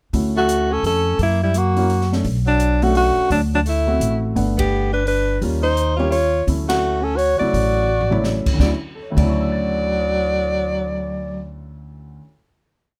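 A swinging jazz waltz at 170 BPM in 3/4 and D major, with the drummer keeping time on the hi-hat with sticks over a high-tuned snare and boomy kick, while a woody pizzicato upright bass plays in two up front and a baby grand piano adds syncopated, short-sustained comping in rootless voicings. Above them a clear, close-miked alto saxophone states a relaxed, playful motif-based melody in sentence-like phrases, shadowed mostly in sixths by a warm, subtoned tenor saxophone, both with vibrato. The short piece moves through Dmaj7, F#7, Bm7, D7, Gmaj7 and Eb9, with band accents at 4.5 and 6.6 seconds and a quick drum fill before a final chord at 8.6 seconds, all captured with close, detailed microphones and light reverb.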